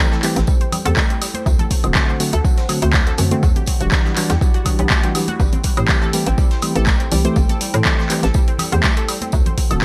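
Late-night and deep, this deep house excerpt at 122 BPM in A dorian rides a lightly swung 4/4 groove, with an up-front overdriven electronic kick and a punchy analog drum machine of handclaps, hi-hat, shaker and woodblock under gated reverb, a very quiet snare and tambourine, ringing high-tuned congas in the background, a hollow, bouncy FM bass with tube saturation, mellow tine electric piano stabs with delay, detuned sawtooth pluck arpeggios with chorus and digital delay, and a warbling, nostalgic tape-like pad holding dark sustained chords, with the bass, piano, pluck and pad all pumping over Am7, D7 and Em9 in a bright 1980s-style digital mix with little reverb.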